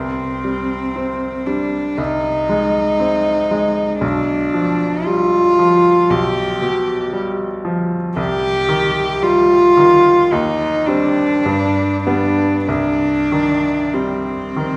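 A solo cello and a grand piano begin together in a solemn, elegiac romantic duo in C minor, moving slowly at 47-59 BPM in 4/4 with a freely breathing rubato feel. The cello carries the melody up front with an intimate, airy sul tasto tone, light vibrato and soft attacks, while the bright, polished piano accompanies below it with brilliant, short-sustained chords that settle on C minor near 12.7 seconds. Both sit inside a wet recital hall reverb that places the listener further back in the room, and the passage is cut from a longer piece.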